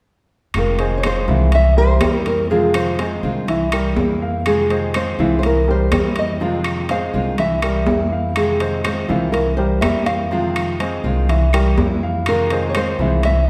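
A straight 4/4 groove at 123 BPM drives this sultry, danceable Cuban son and guajira fragment in F minor, with thumpy, dark gut-string pizzicato upright bass up front, ringing metal-shell timbales, dry, woody claves in the background, a fingerpicked steel-string acoustic guitar accompanying, a small, thumb-plucked nylon-string guitar carrying the melody, and a warm concert grand piano with deep bass spinning arpeggios over alternating Fm7 and C7 chords, the ensemble set in a wet recital-hall reverb.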